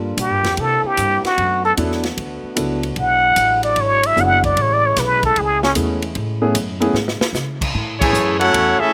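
A raspy, growling trumpet with a plunger mute carries the melody of this joyful big band swing excerpt, its wah-wah tone and scooped notes touched by a slapback echo. Behind it sit an intimate grand piano with audible action noise, a woody pizzicato upright bass, a polished drum kit with a punchy kick, and tight sustained chords from a trombone section in the background. After a drum fill at 7.0 seconds, a bright trumpet section and a warm trombone section on a second line join for a band accent at 8.0 seconds, all in a dry, brassy sound.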